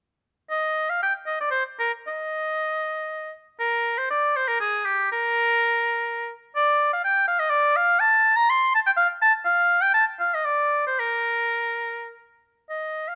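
In a flexible, rubato 3/4 that drifts between 103 and 127 BPM, this serene, radiant baroque-style classical fantasia features a solo oboe playing from 0.5 to 13.2 seconds, ranging from G4 to C6 with a clear tone and light vibrato. Beginning in Eb major and moving to Bb major from 6.5 seconds, the oboe sits up front in a moderate stone room reverb whose 1.3-second decay lends the line a gentle halo. The passage is cut from a longer piece.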